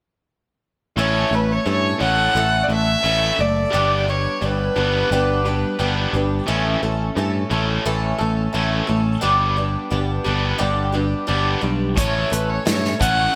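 A dark, woody fiddle carries the melody with light vibrato, bowed by a single player and sounding distant even as it sits up front, stating its line from 1.0 to 6.2 seconds and returning at 12.0 seconds. This short cut from a longer folk rock and heartland rock piece moves at 87 BPM in a straight 4/4, hopeful and open-road in mood, swaying between A and G in A mixolydian. Beneath the fiddle, a picked twelve-string acoustic guitar shimmers with octave-doubled strings, boxy body and audible finger squeak, playing its accompaniment with a gentle swing and a lush chorus. A bright, overdriven electric guitar, double-tracked, plays a riff through the whole passage, while a picked electric bass sits direct and up front underneath. A natural country drum kit arrives only at 12.0 seconds, its punchy kick, medium-tuned snare and hi-hat carrying a gated reverb, all set in a moderate plate reverb and a bright 1980s-style digital production.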